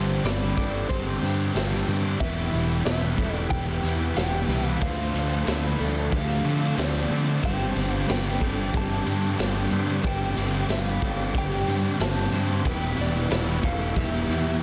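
A punchy, fuzz-soaked electric bass sits up front in this hazy, wistful excerpt of shoegaze-tinged dream pop rock, with a gritty, saturated garage drum kit entering at 0.3 s, bringing a boomy kick, a medium-tuned snare and hi-hat in a small, pumping room. A dark fuzz guitar riff churns in the background alongside a crunchy overdriven riff bathed in reverse reverb and a very quiet, double-tracked overdriven riff, while a shimmering twelve-string acoustic plays octave-doubled arpeggios through lush chorus and slapback echo. A bright, compressed clean electric guitar carries the melody with analog chorus and slapback echo, and a very quiet, ethereal pad of detuned sawtooth and noise holds sustained chords over a Gsus4, Em and Dm7 progression, all within a dense, heavily limited master.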